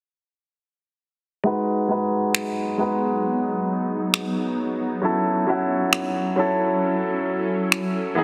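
The sound is heavily compressed and radio-like, set in a lush hall reverb with a long tail, in a short cut from a longer piece. It is a longing, moody contemporary R&B piece in a straight 4/4 at 67 BPM, sitting in F# dorian and moving from G#m7 to F#m7. A clear, intimate baby grand piano enters at 1.4 seconds with accompaniment, its natural tone, long sustain and audible action noise placed up front and softened by a low-pass filter. Electronic finger snaps arrive at 2.3 seconds, overdriven and produced, sitting up front as the drum part. At 3.0 seconds a granular cloud pad joins with sustained chords: cloudy, blurred and evolving, built from detuned unison triangle tones with a slow attack, long release, tremolo and its own reverb, bright yet low-pass filtered. A filter sweep runs across the whole passage.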